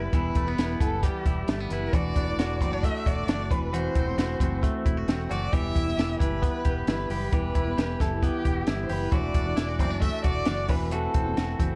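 Wistful and bittersweet, this short excerpt of jangly indie pop in E minor moves at a straight 134 BPM, with a distant, expressive bowed violin singing the melody with vibrato and portamento over a full-bodied fingerpicked jumbo acoustic guitar, twangy, compressed arpeggios from a bright, clean electric guitar recorded direct, a round, punchy fingered electric bass, and a small, smooth cocktail drum kit whose high-tuned snare, hi-hat and punchy kick sit prominently in a dark production with light reverb, as the chords cycle from Em through D/E and F#dim/E over a steady E.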